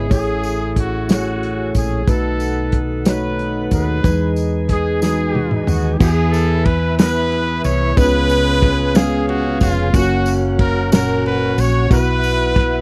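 A muffled, up-front soul drum kit with dark cymbals and a tight kick anchors this soulful, hopeful slow gospel passage in 6/8 at 61 BPM in E major, marking a fill from 5.0 to 6.0 seconds beneath a bright, vibrato-laden trumpet melody joined by a mellow, distant horn section, while a worn, slightly out-of-tune tine electric piano, a smooth tonewheel organ with key click and fast rotary speaker, a round hollow-body electric bass and a jingly tambourine fill out the dry, close 1970s-style sound.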